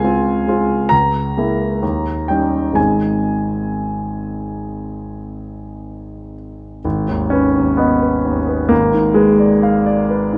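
A rubato pulse in four gives this brief fragment of a romantic character piece for solo piano a freely breathing, unhurried flow. The mood is lyrical and warm, the grand piano sounding clear and present, placed up front with a long sustain that lets its tones ring. It opens on a rich seventh chord and moves through a gentle cadence, settling by 2.8 seconds before the music turns toward a darker minor colour at 6.8 seconds. The piano spans from deep bass notes to a bright upper register, playing alone throughout the 10.4 seconds. A wet recital hall reverb surrounds it, and the production leans dark and warm, giving the whole a warm glow.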